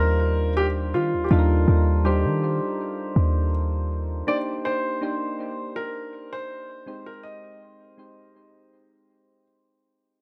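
A deep, boomy 808-style bass sits up front in this smooth, tender contemporary R&B fragment and drops out at 4.2 seconds. Above it, an intimate grand piano with audible action noise carries the melody until 9.4 seconds, while soft, round electric-piano-like synth keys with chorus supply the accompaniment; both keyboard parts are washed in tape echo over chords moving from Ebmaj9 to Cm9 and Abmaj7. A lightly swung sixteenth-note feel, small-room ambience and an echo-heavy mix frame the passage, which fades out across its whole length.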